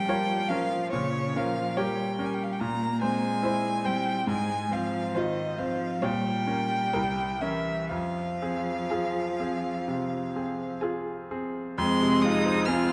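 A rich, vibrato-laden violin sings the melody up front from the very start of this slow, rubato classical movement for piano quintet in F minor, joined at once by a smooth, distant cello line and a bright grand piano whose long sustain and audible action noise sound present and intimate. A second violin with soft attack and expressive portamento and a warm, even viola sit in the background, the second violin falling away at 11.5 seconds, as the chords pass from Bb minor to F minor at around 60-73 BPM. Concert hall reverb wraps the dark production in a yearning, solemn mood.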